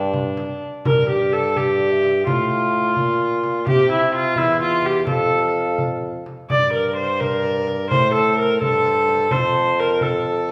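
A rich, reedy viola with a gut-string tone and light vibrato sits up front, carrying the second line of this solemn, rustic renaissance-style consort dance in G dorian, moving in 6/8 at 85 BPM. Behind it, a dark, distant cornet with its own light vibrato takes the melody in the background, while a clear, present trombone holds the bass and a small, bright frame drum played with soft hands enters at 0.1 seconds. A wet recital-hall reverb surrounds this short cut from a longer piece, with the harmony passing through F/A, C, F, Gm and Am.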